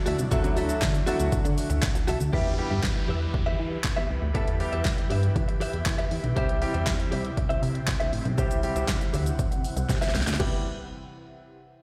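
An airy, breathy pad opens this energetic, driving dance-pop excerpt in E minor at 119 BPM, sitting soft in the background with chorus, phaser, a low-pass filter and sidechain pumping as it sustains chords from a Dadd9 into Em and C. Almost at once a deep house drum kit arrives up front, with a punchy kick, fat snare, handclaps, hi-hat, shaker and crash cymbal, alongside a glossy, retro synth bass of pulse and sawtooth tones that pumps against the kick and carries a dark, evolving character. A bright, clean electric guitar, recorded direct and compressed, plays a picked riff through ensemble chorus and slapback echo, while a clear, natural grand piano adds accompaniment from 0.3 s, also pumping and treated with a low-pass filter and slapback echo. The passage opens on a drop, then a filter sweep runs from 2.3 s as an electronic downlifter sounds until 6.4 s. A drum fill arrives just before the return to Em at 10.4 s, all heard as a live gig through the venue's PA with light recital hall reverb.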